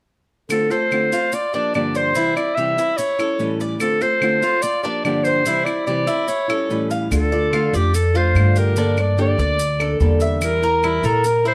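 Warm and nostalgic, this Cuban son and guajira excerpt sets a clear, classical-style solo clarinet melody up front over a small, fingerpicked nylon-string guitar and the metallic, double-string arpeggios of a picked Cuban tres, with woody claves in the background and grainy, mellow maracas sitting close and dry, until a dark, thumpy pizzicato upright bass with gut strings arrives up front at 7.1 s for the closing section.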